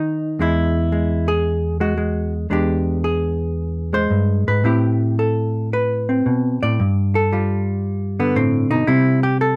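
A clean, dark hollow-body electric jazz guitar plays alone and up front for the full 9.6 seconds, fingered and ranging from E2 to D5 in a playful, sophisticated solo jazz passage cut from a longer piece. The feel is a swung 4/4 at 114 BPM, loosened by rubato, as the harmony moves through Eadd9, E7alt, Am9 and G9 before landing on C5. Light reverb gives the room a gentle sense of space.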